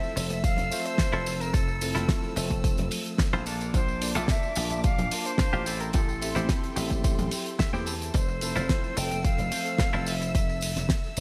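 A bright, 1980s-style digital production with light reverb and a small-room ambience frames this groovy, feel-good nu-disco excerpt at 109 BPM in 4/4, moving through Fmaj7, Bbmaj7 and Am7 in F major before returning to Fmaj7. An airy silver concert flute carries the melody with vibrato and a slightly unsteady, tongued delivery through digital delay. A tine electric piano heard through a combo amp plays accompaniment with lush chorus, delay and sidechain pumping, while a rich symphonic string section holds bowed chords in the background, pumping with the sidechain too. A twangy, scooped clean electric guitar recorded direct plays a compressed, picked riff with subtle chorus and delay, adding a fill from 7.3 to 8.1 seconds. Underneath, a punchy, foam-muted thumbed slap bass enters at 0.2 seconds beside a damped 70s drum kit with a fat snare and dark cymbals, a very quiet ringing layer of tambourine and congas, and an up-front, layered electronic kick that arrives at 0.4 seconds.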